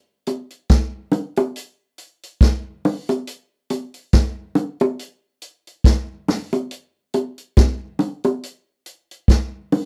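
Reggae at a slow 70 BPM in 4/4, with a swung sixteenth-note feel that gives this short cut from a longer piece a serious, hypnotic mood. A vintage acoustic drum kit carries the groove from 0.3 to 9.9 seconds, its hi-hat, medium-tuned snare and punchy kick sitting up front with the natural sound of a studio room. Tight, high-tuned bongos play across the same span, placed up front but a little lower in level, with the character of a small room. The arrangement moves from its opening section into a second one at 6.7 seconds, and the drums and bongos carry on together through both. The sound is dry and close, with little reverb, in the manner of a 1970s studio recording.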